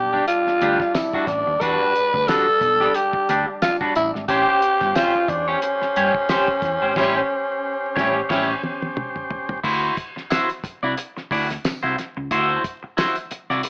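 Funk at 90 BPM with a swung sixteenth feel, playful and energetic, this short cut opens on a growling, breathy tenor saxophone melody up front with plate reverb, set over gritty overdriven tonewheel organ chords with key click, a round hollow-body bass, a clean phaser-tinged electric guitar and a cloth-damped, thuddy drum kit with a fat snare, while a jingly tambourine sits in the background. At 7.0 seconds a distant, roomy horn section adds a brief second line as the band hits accents, and the drums then fill from 8.3 seconds, moving from Em9 and A7#9 to a D9 at 9.6 seconds, where the saxophone and organ have dropped out and the guitar, bass, drums and tambourine carry on. Vinyl crackle and an AM radio tone give the whole recording a vintage cast.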